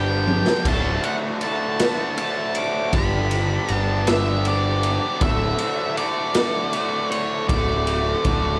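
Recorded with small-room ambience, this restless, cathartic stretch of quiet-loud alternative rock in D major moves at 53 BPM in 6/8, with a dark octave-fuzz lead guitar carrying the melody through slapback echo over a bright, double-tracked distorted guitar riff and an up-front, overdriven fuzz bass, while a saturated, gritty garage drum kit with a punchy kick and rolled-off top opens on a fill at 0.3 seconds as the chords move between G and D.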